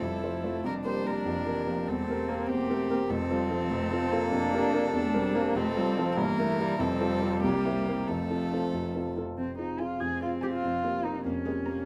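A quick, cheerful classical-period movement for piano quartet in F major, moving in a spirited 6/8 at 97 BPM, heard as an excerpt cut from a longer piece. The baby grand piano sits up front with a natural tone as accompaniment, while the viola adds intimate, lightly vibrato accompaniment, the cello carries an expressive second line with portamento, and the violin floats a pure, airy melody above them. All three strings are bowed sul tasto by single players and recorded close, in light reverb, and the harmony turns to F minor at 9.4 seconds.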